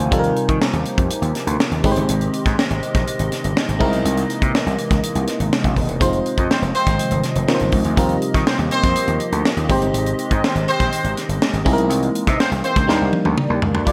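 Glossy and upbeat, this polished 1980s jazz-funk pop cut moves at 122 BPM in a straight 4/4 feel in Eb major, taken from a longer piece. A glassy, bell-like FM electric piano with a subtle chorus carries the accompaniment, while a hollow, flute-like pad with ensemble chorus sustains mellow chords beneath it. Gritty slap bass, overdriven and punchy, sits up front beside a tight funk drum kit whose high-tuned snare and tight kick are dressed in gated reverb. At 6.4 seconds a smooth horn section with light vibrato enters as a second line, and a drum fill arrives at 12.9 seconds as the harmony settles on Ebmaj7. The sound is bright and digital in true 1980s style, set in a lush hall reverb.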